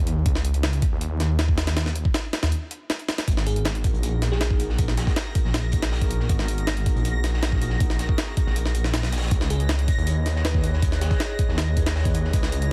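Frenetic and atmospheric, this drum and bass cut in a jungle vein opens with a thick, menacing detuned saw bass and a gritty, pitched-up sampler drum kit with a thumpy kick, both up front, pausing for a short break at 2.5 seconds. From 3.3 seconds a warbling, nostalgic tape-like pad with chorus and reverb joins alongside a crunchy, saturated breakbeat kit with a high-tuned snare and rolled-off top sitting in the background, and from 4.1 seconds a reversed, dreamy swelling texture shimmers above. A bell-like FM electric piano adds sparkling fragments with chorus and dub echo, all under a dense, heavily limited master dusted with vinyl crackle.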